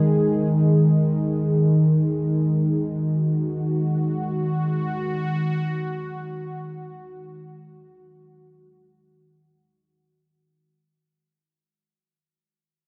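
Floating in free time, this ominous, dark ambient fragment is cut from a longer piece and lasts about 10.7 seconds. A single sweeping, resonant pad carries everything, holding sustained chords between Eb3 and Ab4 that rest on an Ab5/Eb harmony from the opening moment. The pad sits up front, built from detuned sawtooth and sine tones with a sub octave beneath, and its slow attack and filter swell give it an evolving, full-bodied character thickened by chorus. The sound is steeped in a drenched cathedral reverb with a 6.4-second decay, suggesting a vast, echoing space, while a cassette tape quality lends it a worn, murky grain. The whole fragment fades out from 0.0 to 10.7 seconds, leaving a brooding, suspended atmosphere.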